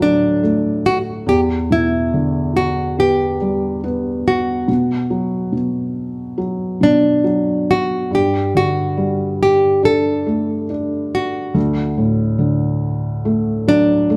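A fingerpicked nylon-string guitar carries the melody in this emotional, hopeful pop ballad excerpt, its bright, small tone sitting up front at a slow 70 BPM in D major. Beneath it, a felt-muted upright piano supplies soft, dark, vintage accompaniment, intimate and close with audible action noise, as the chords move from D through Em7, Bm and Gsus2 before returning to D at 11.6 seconds. Both parts play together throughout, captured as a live band in one room and bathed in a lush large-studio reverb.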